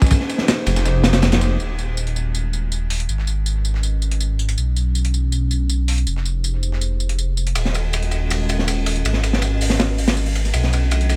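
This frenetic, nostalgic drum and bass excerpt runs a straight 4/4 at 161 BPM in Eb minor, driven by a crunchy breakbeat kit of hi-hat, kick, ride and snare that plays from 0.0 to 1.4 seconds, then returns at 7.6 seconds. That kit sits up front with a saturated, gritty character, a tight kick, a medium-tuned snare, dark cymbals and a rolled-off top, all touched by analog delay. Underneath, a dusty soul sampler-style kit of hi-hat, snare and tambourine runs the whole way through, compressed and tape-warm, with high-pass filtering on its snare, percussion and hats plus its own analog delay. A dark detuned saw bass enters at 0.7 seconds, deep and rumbling with beating unison voices, sitting between Eb1 and B1. A warbling, lo-fi pad holds sustained chords from E3 to Eb5 with a slow attack and long release, wrapped in chorus and built-in reverb, and a filter sweep runs across it from 1.6 seconds as the harmony cycles through Fm11, Ebm11, Abm11 and Bm11. 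The mix is echo-heavy with studio reverb.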